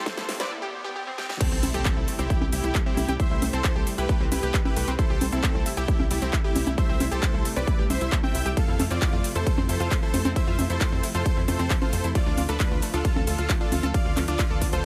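A brief build-up of a rising effect, a drum fill and a huge, detuned supersaw lead over a warm analog pluck arpeggio and a nasal, driving sequencer bass gives way at 1.4 seconds to a euphoric uplifting trance drop, where an impact sounds in the background. A punchy, up-front electronic kick anchors a big-room kit of huge snare, metallic hats, claps, crash, ride, shaker and congas, whose hats, percussion and cymbals pump with sidechain alongside the lead, the bass and the warbling, chorused pluck. The harmony moves from C6 to Fmaj7 at 8.6 seconds and on to Dm in this short cut from a longer piece.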